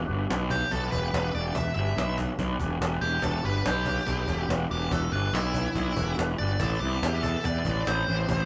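A nasal, overdriven lead guitar with a parked wah takes an up-front solo in this brief, smoky and brooding blues rock power-trio passage with a southern rock lean, riding over a growly, punchy fuzz bass, a snappy cajon struck with hard hands, and a reedy tonewheel organ holding sustained chords through a slow rotary speaker in the background, as Em7 gives way to Am7 at 6.6 s, with the band playing live in one room under a moderate large studio reverb.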